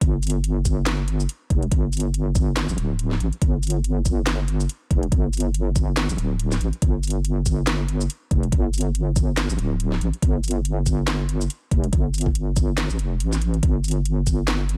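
A heavy, brooding stretch of deep dubstep opens straight into the drop, with a knocking, up-front electronic kick sitting beside a deep, mellow wobble bass built from detuned square and sine tones, compressed and thickened with chorus. A layered garage kit fills out the swung half-time groove with a cracking snare, metallic hi-hats, handclaps and shaker, and both drum parts carry a tape-warm character under a digital ambience. The kick drops out at 14.4 seconds, just before the bass and kit end at 14.8 seconds in this cut from a longer piece.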